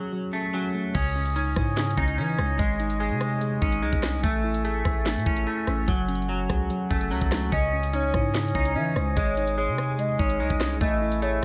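A half-time drill groove at 146 BPM kicks in at 0.9 seconds: an up-front electronic kit of knocking kick, sharp snare, rim clicks, handclaps, metallic hi-hats and crash cymbal sits over a long, deep, sine-toned 808 bass, setting a cold, ominous mood in C# harmonic minor. A worn, slightly out-of-tune tine electric piano and a twangy, picked clean electric guitar open the piece before the beat, the guitar's arpeggios washed in lush chorus and delay, and a reedy, airy accordion joins with sustained chords. At 7.5 seconds a smooth, gliding portamento lead with vibrato, chorus and delay adds a second line over the dry mix in this brief cut from a longer track.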